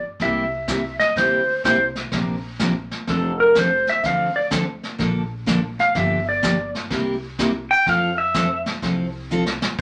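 Down-home and playful, this brief western swing excerpt in F major moves at 125 BPM in 4/4 with a loose swing on the eighth notes. A clean, twangy lap steel guitar carries the melody up front as a slide solo, with fingered volume swells, and it drops out at 8.6 seconds. Beneath it, a bright, full-bodied jumbo acoustic guitar picks out the accompaniment through a C7, Bbadd9, F6, Dm7, Bbmaj7, Gm7, C7 and F progression, while a woody, growly upright bass played pizzicato holds the low end. A warm vintage kit played with brushes, natural and small-room in character, keeps time on snare, hi-hat and a punchy kick, its top rolled off, and it closes with a drum fill from 9.3 seconds. Moderate studio ambience with a short half-second decay surrounds the whole.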